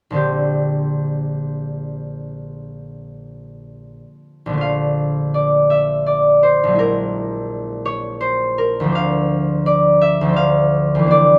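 Classical solo concert harp in Bb lydian, dreamy and graceful, moving in a rubato 3/4 at around 83 BPM with uneven beats, its warm, ringing, fingerpicked tone sitting up front through close, detailed microphones and light reverb as it spans Bb1 to F5, drifting from Bb69 into a second passage at 4.6 seconds over Bbmaj7, Gb9/Bb and Dm7 before this short cut from a longer piece ends at 11.4 seconds.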